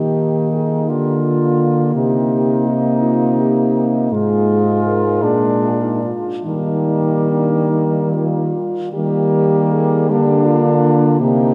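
Classical writing for horn quartet, this lyrical, warm excerpt moves in a rubato 6/8 at roughly 46-57 BPM counted in dotted quarters, in Eb major and tuned to A4 = 444 Hz. All four French horns sound together from 0.0 to 11.5 seconds: the top horn carries the melody with a close-miked tone, vibrato and soft attacks, while a second horn with a clear, vintage color and light vibrato sings a line beneath it. A mellow third horn supplies accompaniment in its middle register, and the lowest horn, placed up front with its own vibrato and gentle onsets, anchors the bass. The harmony passes from Eb through Bb/D, Cm7, Fm/Ab and Bb7 before settling back on Eb at 6.5 seconds, and a return of the opening material begins at 9.0 seconds. A dark production and a wet cathedral reverb lasting about 5.2 seconds bathe the ensemble in a long, resonant halo.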